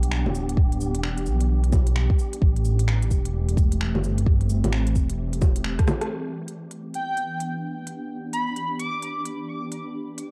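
A rainy, nocturnal future garage fragment opens with an ethereal, full-bodied pad holding sustained Em7 and Am7 chords, colored by ensemble chorus, reverb and sidechain pumping, above a dark, detuned sawtooth bass that rumbles deep and up front. An overdriven electronic kit of bongos, cabasa, finger snaps, crisp hi-hat and rim click moves at 130 BPM in 4/4 with a 62% swing on the sixteenths, and a layered electronic kick joins at 0.6 s. Alongside them drifts a breathy, wind-like noise texture bathed in reverb. A short drum fill and band accent mark the turn near 6 s, where the bass, kick and texture drop out, leaving the pad and kit. At 7.0 s a soft, dreamy lead enters high and up front with chorus, vibrato and analog delay, all set in the light digital ambience of a home cassette recording.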